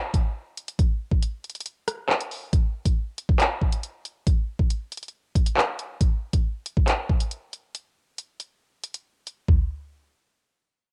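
An electronic drill drum kit sits up front with a knocking kick, bright hi-hats, handclaps, rim clicks and toms, all roughened by vintage 12-bit sampler grit. It enters at 0.1 seconds, breaks briefly from 1.7 to 2.5 seconds, and plays on until 9.6 seconds in this menacing, ominous hip hop fragment cut from a longer piece. The 138 BPM half-time groove in 4/4 comes through light reverb and the character of a home cassette recording.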